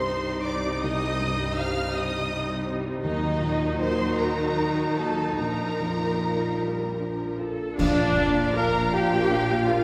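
A rubato 6/8 pulse of 49-55 BPM carries this moving, hopeful cinematic film score in Bb major, cut from a longer piece. A lush, intense violin section sings the high melody over a smoother second violin line. A focused, up-front viola section and a soft, felt-muted upright piano with audible action noise fill in the accompaniment, while rich cellos and double basses hold the bass in a wet concert-hall reverb. At 7.8 seconds the band accents together: a very quiet clarinet and hollow flutes add second lines, mellow French horns sustain chords, and bright clash cymbals with concert bass drum and barely audible timpani mark the moment.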